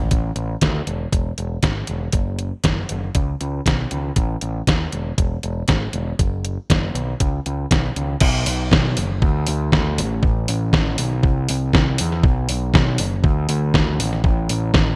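Jangly and upbeat, this indie rock passage moves at 119 BPM in a straight 4/4, set in A major with tuning pitched slightly high at A4 = 444 Hz. A growling picked electric bass with overdrive sits up front, its direct-and-amped tone carrying a gritty edge as it holds the low register from E1 to E2 across the full 15 seconds. Beside it, a detuned 8-bit digital drum machine brings a sampler-style kit of thumpy kick, medium-tuned snare, hi-hat and crash cymbal, also placed forward and treated with gated reverb. The two parts carry the whole arrangement, with the music shifting into a new section at 8.2 seconds. The sound is bright in a 1980s digital style, with light room reverb and a faint mains hum beneath, and the clip is cut from a longer piece.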